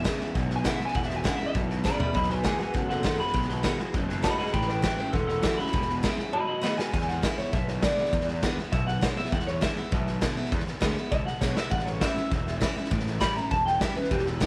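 Rockabilly at a driving 201 BPM in E mixolydian, rowdy and retro, this cut from a longer piece opens with a twangy, slightly broken-up electric guitar melody carrying subtle chorus and tape echo over a bright, full-bodied acoustic dreadnought, a fuzzed, round bass sitting in the background, and a lo-fi, lush-chorused guitar riff that drops out at 6.9 seconds. A raw garage drum kit sits up front, saturated and gritty with a punchy kick and a pumping stone-room sound, firing fills at 1.8, 6.6 and 11.4 seconds as a clean electric guitar solo takes over from 6.9 seconds across E7, B7 and A7 changes. The small room ambience and lossy compression artefacts give the whole piece a rough, vintage edge.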